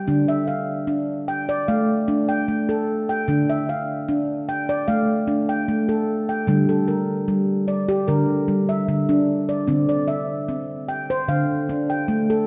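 In a straight, unhurried 4/4 pulse, a solo handpan of ringing nitrided steel, played up front with soft fingertips, carries this gentle, meditative world piece through mellow minor harmonies that settle back home at 11.3 seconds, all bathed in a wet echo-chamber reverb and a dark, warm production.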